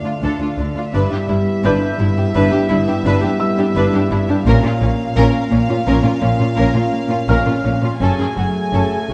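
A dark, warm production set in a moderate concert hall reverb gives this short cut from a longer suspense film score an ominous, eerie air. At 85 BPM in a straight 5/4, two violin sections played sul tasto with a soft attack carry a pure, floating melody and a second line close to the listener. Beneath them a lush viola section with vibrato and a woody tone sits in the background, while a distant French horn section holds sustained chords with light vibrato. A bright, ringing Celtic harp plays a fingerpicked riff in the background, and a felt-muted upright piano adds a mellow, intimate texture high up, its action noise audible. A rich cello section supplies the bass, joined at 0.2 seconds by a distant, woody double bass section, as the harmony moves from Dm through G6 and Bbm to F#madd9.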